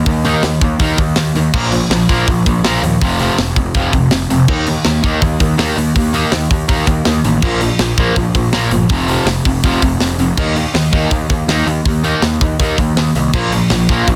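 Upbeat and rowdy, this punk rock excerpt drives forward in a straight 4/4 feel, cut from a longer piece and holding to a single section for its 14.2 seconds. A bright, distorted electric guitar, picked and double-tracked, sits up front playing a riff that cycles through power chords on Eb, Bb and F. Beneath it, a picked electric bass with fuzz and overdrive adds a growly low end, entering at 0.1 seconds alongside the drums. The tight metal drum kit, mid-forward with a medium-tuned snare, rolled-off top and soft clipping on the kick, pounds through crash cymbal, hi-hat, kick and snare. The sound is dry and close, with little reverb, and the dense, heavily limited master keeps the whole band packed and loud.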